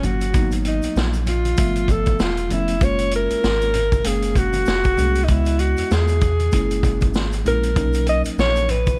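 A breathy alto saxophone with light vibrato and a smooth top carries the melody up front in this smoky, mellow jazz-hop excerpt, backed by a worn, slightly out-of-tune tine electric piano moving through chords such as Abm9, G13 and Gbmaj7, a deep, round dub sub bass, a vintage acoustic drum kit with a tight kick and rolled-off top, and very quiet congas and tube shaker, over a swung 16th-note groove in a dry room.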